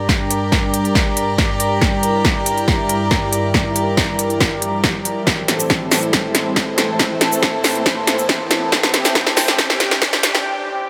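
Up-front, punchy snare and crisp hats from a big-room dance drum kit drive a drum fill through this aggressive, chaotic build-up from a heavy wobble dubstep track at 139 BPM in half-time, G dorian, backed by a layered electronic kick. A lush, thick sawtooth pad with warbling detuned unison and chorus carries sustained chords under a filter sweep, moving from Gm to Am at 5.3 seconds. A reedy, gut-string chamber string section adds period-style bowed texture, and a very quiet electronic riser enters at 3.9 seconds before a brief break at 10.4 seconds, with the pad and strings pumping from sidechain compression, all set in a moderate digital room reverb.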